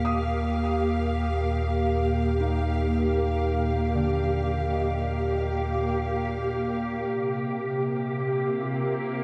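A slow, straight 3/4 pulse at 77 BPM carries this serene, weightless ambient passage in Eb major, cut from a longer piece. Up front, a glassy, ethereal FM pad holds sustained chords with a slow attack and long release, thickened by ensemble chorus and haloed with shimmer reverb. Behind it, a soft, felt-muted upright piano spins intimate arpeggios through delay and shimmer, fading out over the first 7.1 seconds. A round, sine-like sub bass anchors a warm, deep Eb beneath, while a dark, woody chamber violin section adds a bowed, vibrato-laden texture with its own shimmer. The bass drops away at 7.0 seconds and the violins at 7.1, leaving the pad and piano to drift over a rootless Eb6 chord. Everything sits in a huge, wet space whose reverb lingers for about 7.3 seconds.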